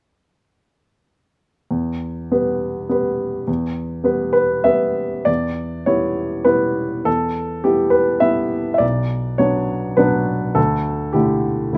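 The recording has the rough, close feel of a home demo, with a moderate studio reverb giving the room a short tail. It is neoclassical minimalist piano music in three, played with a rubato feel and a wistful, reflective mood. A baby grand piano plays solo from 1.7 to 11.8 seconds, spanning B1 to E5 and sitting up front with an intimate, natural tone, short sustain and audible action noise. The harmony rests on Em, moves to Bm at 8.8 seconds, and then reaches Dsus2. The passage is cut from a longer piece, with its opening section giving way to a second at 5.3 seconds.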